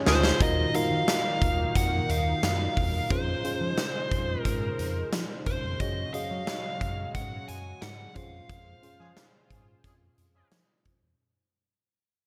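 A glossy, arena-sized mix in lush hall reverb carries this nostalgic 1980s-style pop excerpt at 89 BPM in Db major, where a dark, overdriven lead guitar sings the melody up front over a big, punchy rock drum kit, a round analog bass, a dreamy chorused FM electric piano, a bright, evolving background pad and distant horn stabs at 0.1 and again from 9.0 seconds, all moving through Ebmadd9, Dbmaj7 and Gbsus2 chords as the piece fades out from 0.4 seconds.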